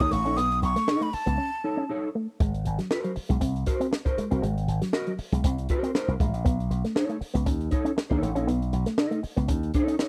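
A breathy, hollow jazz flute with slapback echo opens this gritty, funky excerpt at 119 BPM in straight 4/4, soloing over a dark, clean, fingered electric guitar in ensemble chorus, a punchy slap bass through an envelope filter, a compact cocktail kit with a high-tuned snare, and a twangy, picked guitar riff with its own envelope filter, until a break at 1.4 seconds and the flute's exit at 1.9 seconds hand the groove to the rhythm section, which moves between B9 and Ab9 in a dry, close 1970s-style small room.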